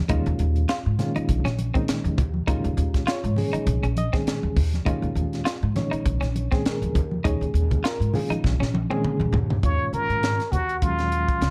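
The recording has a dark production with light reverb, and this short cut from a longer electric jazz fusion piece feels slick and driving, with a sixteenth-note swing. An up-front upright bass, woody and played pizzicato on steel strings, anchors the groove alongside a crisp, polished drum kit with a high-tuned snare and punchy kick in an airy studio room. A reedy electric piano with fast tremolo and plate reverb carries the accompaniment through its built-in speakers, while a clean electric guitar adds compressed, picked stabs bathed in lush chorus and plate reverb until 9.2 seconds. Congas with thin, damped skins and soft hands sit in the background, band-limited and vintage in tone. After a drum fill, a plunger-muted trumpet enters at 9.6 seconds for a jazz-style solo, clear and present with wah-wah, scooped notes and light vibrato, as the harmony moves from a suspended ninth chord to a minor ninth.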